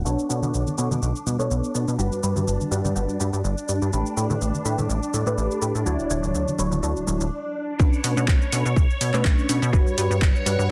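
A plucky, up-front analog bass anchors this short excerpt of sensual, funky filtered disco house at 124 BPM in B minor, its sawtooth and pulse-wave tone snapping with a fast attack and decaying filter pluck under sidechain pumping. Above it, a dark, detuned polysynth comps through chorus, phaser and a moving notch, while a swirling vintage string machine holds slow-attack chords with ensemble chorus. An overdriven analog drum machine supplies handclaps, hi-hat and shaker from 0.1 seconds, alongside very quiet tambourine and congas played with hard hands in a small room. A filter sweep runs over the opening chords of Bm9, Gmaj7, A9sus4 and Dmaj9, and a brief break at 7.3 seconds drops the tambourine and congas out. At 7.8 seconds the drop lands with a punchy, layered electronic kick, and the progression returns to Bm9 and Gmaj7 under light reverb and a dense, heavily limited modern master.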